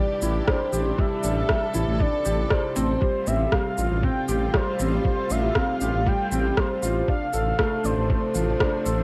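A velvety synth lead sings its melody between C5 and G5 over bowed, lush strings, a felt-muted upright piano riff and a deep, rumbling detuned saw bass holding A1, all from the very start of this melancholic, hypnotic piano and strings electronica cut from a longer piece. An overdriven electronic shaker and rim click arrive at 0.2 seconds, sitting up front with a large-room sheen, and a muffled, thumpy, pitched-down kick follows at 0.5 seconds, driving a straight 118 BPM in 4/4. The bass pumps against a sidechain and beats with its detuned unison, while the piano stays soft and intimate and the woody string section breathes with vibrato. The chords move from Cadd9/A to Fadd9/A and then Dm7/A over a constant A in the low end, tuned to A4 = 443 Hz. Light reverb and the tape colouring on most parts give this home cassette recording a hazy, lo-fi glow.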